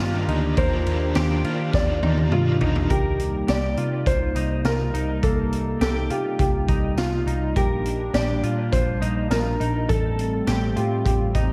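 Dream pop with a haunting, ethereal mood, this short cut from a longer piece moves at a moderate pace in a straight four, its dreamy mix soaked in a lush hall reverb. A felt-muted upright piano carries the melody throughout, soft and intimate, trailed by a diffuse ambient delay, while a hollow, flute-like pad holds airy sustained chords with a slow attack and long release. A bright, clean semi-hollow electric guitar plays compressed, fingered arpeggios through analog chorus and its own ambient delay. A double-tracked overdriven electric guitar with tremolo and ensemble chorus adds accompaniment only until 2.9 seconds. Beneath them, a dark, round, foam-muted picked bass anchors the low end, and a raw garage drum kit enters at 0.3 seconds, up front and gritty with a boomy kick, a high-tuned snare, a rolled-off top, tambourine and toms, and it plays a fill from 1.7 seconds that leads into the second section. 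The harmony opens on Cm11, then moves through Cm7, Bb6 and Am7.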